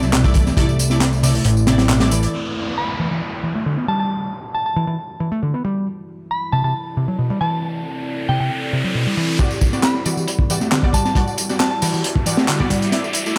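Breakbeat excerpt at 136 BPM in E minor with an energetic, swaggering feel: a crunchy, gritty breakbeat kit with a punchy kick and high-tuned snare, overdriven electronic tambourine and handclaps, a fat detuned analog bass and bold orchestra-hit-like synth stabs open the track over a deep, moody ambient pad and a round, foam-muted overdriven picked electric bass riff, then drums, stabs and analog bass drop away at 2.3 seconds as a downlifter and riser enter and a crystalline FM bell melody sings, before the kit, percussion and stabs return at 9.4 seconds for a filter-swept build-up that ends in a drum fill.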